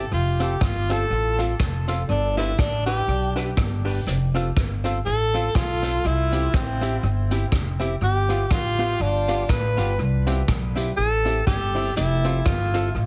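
A swung 4/4 ska groove at 122 BPM, upbeat and bouncy, rides on a vintage brush drum kit with a punchy kick, hi-hat and rim click set distant in a small, roomy space, while a thumpy, woody pizzicato upright bass sits up front. A breathy tenor saxophone carries a solo melody from the start, intimate and whispered with vibrato and scooped notes, over a dark, clean archtop guitar playing picked accompaniment, both touched by analog delay and plate reverb. The chords move through F, G, C and G7, and the mix has a heavily compressed radio sound with light reverb.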